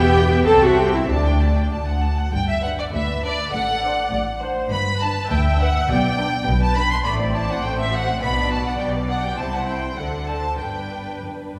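An intense, clear violin section carries the melody up front in this cheerful, spirited classical-period movement for string orchestra, cut from a longer piece, moving at a quick 101 BPM in 2/4 with a rubato feel in G major, while a smooth second violin line and rich violas fill the middle, focused cellos and expressive, forward double basses anchor the bass with lush vibrato throughout, and a wet church or concert hall reverb surrounds the ensemble as the harmony settles home on G at 10.6 seconds.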